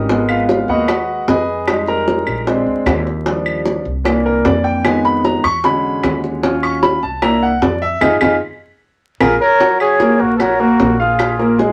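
Driving and sophisticated, this Afro-Cuban jazz excerpt at 151 BPM in 4/4 opens with an intimate, clear baby grand piano soloing up front over thumpy pizzicato upright bass, round low-tuned bongos struck with hard hands and woody claves, with a band accent from 8.0 s before a breathy trumpet with scooped notes takes the melody at 9.4 s alongside a mellow concert flute second line, set in a small room's reverb beneath vinyl crackle.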